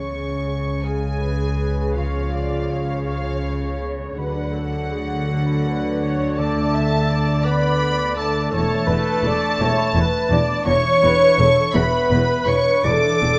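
Moving and uplifting, this cinematic orchestral film-score excerpt drifts in a rubato 6/8 at 55 BPM. A rich, floating violin section carries the melody over a mellow solo clarinet and a close, pure second violin line. A vintage-toned French horn section holds chords in the background, and a ringing, thumb-plucked harp spins arpeggios. Dark, woody double basses and a warm cello section anchor the bass, and a lush, vibrato-tinged viola section joins at 0.9 s. The whole passage sits in a moderate scoring-stage reverb as the harmony moves from C#7 to D6 to E7sus4.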